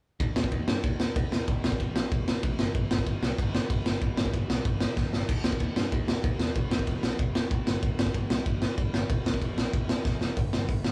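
A raw, garage-sounding drum kit and a bright, growly picked electric bass open this urgent punk rock excerpt in G minor at 189 BPM, played together live in one room with light reverb. The drums sit up front, gritty and saturated with a punchy kick, medium-tuned snare, crash, ride and hi-hat, and a pumping small-room sound with a rolled-off top, while the direct bass stays in the background. Short drum fills break the straight 4/4 pulse at 5.0 and 10.0 seconds.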